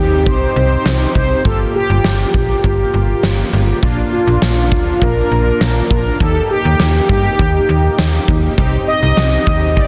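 A straight 4/4 synth-pop groove with a melancholic, cool mood opens on snappy, metallic slap-like FM bass and bold, detuned analog synth-brass accompaniment under a round, dark mellow synth-brass melody carrying chorus, tape echo and shimmer reverb, before a huge arena drum kit with a fat snare and punchy kick arrives at 0.3 seconds, all set in a lush hall over a Cm, Gm7, Bb, Eb progression in a dense, heavily limited master cut from a longer piece.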